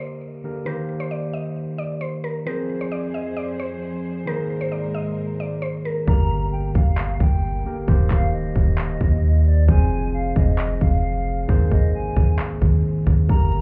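A half-time trap pulse at 133 BPM drives this menacing, eerie hip hop fragment. A gritty, barky overdriven electric piano cycles through Gm, Eb6, Fm and Abadd9 under a woody, detuned mallet-like synth pluck with chorus and delay, while a clear bowed string section adds intense sustained chords from 2.5 seconds. At 6.1 seconds, the pluck and strings give way to a hollow, airy flute line with delay, a deep, decaying sine 808 bass, and an up-front trap kit of hard-clipped kick and handclaps, its crisp hi-hats held back until near the end, all heard muffled as if through a club wall.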